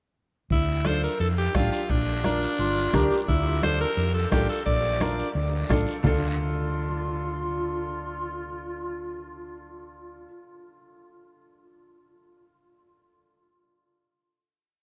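Cumbia at 174 BPM in D minor, this short, driving and passionate piece sets a raspy, gritty alto saxophone melody up front over a round, dark hollow-body electric bass figure, with a soft-beaten bombo, ringing congas in the background and a scraping guiro carrying the groove until 6.1 seconds. A bright, woody upright piano plays rhythmic triad chords from 0.9 seconds, while a growling clarinet with scooped notes adds answering phrases in the melody's rests, returning at 6.1 seconds over the final D minor chord. The whole is bathed in a vast, echoing cathedral reverb.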